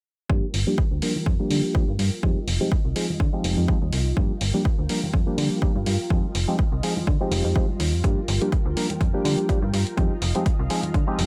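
Filtered disco house with a sensual, funky swing, this excerpt runs a filter sweep across its full length as a barky, lightly overdriven reed electric piano with phaser and a snappy, metallic FM slap bass pump against a punchy, up-front analog kick, while a lush sawtooth string machine with ensemble chorus and 12-bit grit sits in the background, gritty compressed hi-hats also pump from 0.5 s, and very quiet soft-handed congas and tube shaker add bright vintage color over alternating Gm7 and Fm7 chords.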